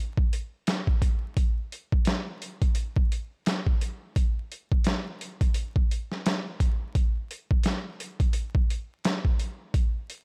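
A swung sixteenth-note groove at 86 BPM in 4/4 drives this short hip hop cut, taken from a longer piece. The only part is a boom bap sampler-style drum kit of kick, snare and hi-hat, entering at 0.2 seconds and playing through to the end at 10.2 seconds. Its sound is compressed, gritty and pitched down, with a thumpy kick and a medium-tuned snare sitting up front. The mood is tough and moody, and the arrangement shifts into a new section at 6.9 seconds. Vinyl crackle runs beneath the beat in a dry space.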